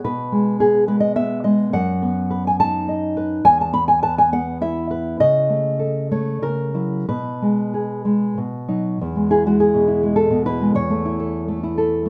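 A nylon-string classical guitar, thumb-plucked with a dark tone and fresh strings, sits up front in this tender, nostalgic romantic piece in E major, moving in a rubato 3/4 at roughly 90-111 BPM. Its chords drift through G#m/B, B7/F# and A/C# before settling on E around 9.0 s, where a new section begins and the short cut from a longer work closes on A/E. The guitar ranges from E2 to B5 and is heard live in one room with a moderate large studio reverb.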